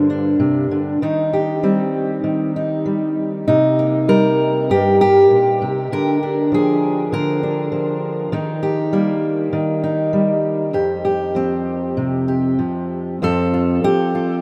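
A lone fingerpicked steel-string acoustic guitar opens on a G minor chord, setting a gentle, peaceful folk mood in straight 4/4. The guitar sits up front with a dark, concert-like tone, and finger squeaks add a close, human detail. Around it hangs a huge, wet ambient reverb that makes the playing feel as if it fills a vast, echoing space. The harmony moves unhurriedly through Eb6, Cm7, Bb7/D, Eb and Fsus2, spanning from low F2 up to C5. At 13.2 seconds the passage turns to a brief new section that settles on an F chord before the clip, cut from a longer piece, ends at 14.4 seconds.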